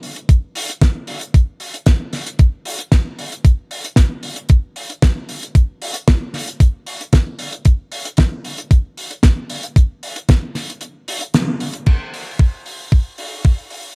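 A straight 4/4 groove at 114 BPM drives this groovy, sunny nu-disco cut from a longer piece, built entirely from drums: a thumpy, overdriven sampler-style electronic kick sits up front beside a dry, damped 70s acoustic kit with a fat snare, dark cymbals, hi-hat and crash, its top rolled off. A break arrives at 10.8 seconds with a band accent at 11.3 seconds before a new section begins at 11.9 seconds, and a light reverb gives the whole a little air.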